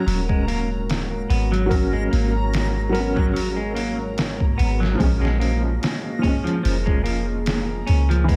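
Trip hop at 73 BPM in 4/4 with a light swing on the sixteenths, brooding and melancholic, this short excerpt drifts from G#m11 to A#m7 at 5.0 seconds. A felt-muted upright piano carries the accompaniment with a soft, thin-felt tone, roughened by vintage 12-bit sampler grit, tremolo, analog delay and a low-pass filter that sweeps across its whole length. A clean, picked electric guitar plays arpeggios through its own analog delay, while a deep, warbling ambient pad holds sustained chords in the background, thickened by chorus and reverb. Far behind them, a reversed, granular texture swells on a single high, bright note. From 0.1 seconds a round, sine-like 808-style bass and a sampler-style drum kit sit up front, the kit pitched down, compressed and overdriven, with a thumpy kick, a medium-tuned snare and hi-hat that sound re-recorded in a small room. The mix is echo-heavy with light reverb, giving the track a hazy, smoky depth.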